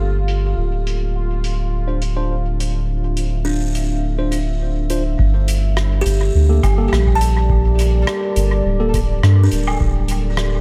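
Ambient dub at 104 BPM in G dorian, hazy and spacious, where a round, up-front sub bass anchors a dark, slow-blooming pad with chorus and reverb, a buzzing, woody kalimba playing echoed arpeggios, a resonant bubbling texture until 5.2 seconds, a soft-mallet kit of filtered hi-hat, rim click and woodblock in a big room with dub echo, clean tine electric piano stabs through phaser and dub echo from 1.9 seconds, and a very quiet, tape-warm electronic kick entering at 5.2 seconds, with filter sweeps on the pad, piano and kalimba over the opening Gmadd9 to Dm7 changes.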